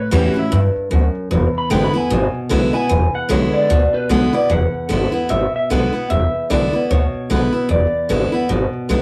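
Rollicking and retro, this swung rockabilly fragment at 150 BPM in E mixolydian opens with a twangy, slightly broken-up electric guitar solo through a small old amp that runs until 4.5 seconds, over a bright, full-bodied picked steel-string acoustic guitar and a woody, thumpy pizzicato upright bass on gut strings sitting up front, moving from A7 to E7 in a rough rehearsal-room recording with moderate reverb and lossy compression artefacts.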